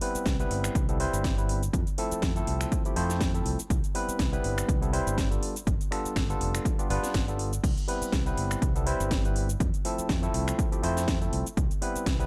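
A 4/4 nu-disco groove at 122 BPM with a light 16th-note swing, driven by an overdriven electronic kick and a layered house kit of cracking snare, metallic hi-hats, shaker, finger snaps and crash, both re-recorded in a large room. Up front, a barky tine electric piano, lightly overdriven through a combo amp with sidechain pumping and tape echo, carries the Cmaj7, Fmaj7 and G9 chords in C major, while a bright, punchy fingered electric bass with tube saturation holds the low end. The mood is feel-good and groovy, set in digital ambience with a faint mains hum, in a short cut from a longer piece.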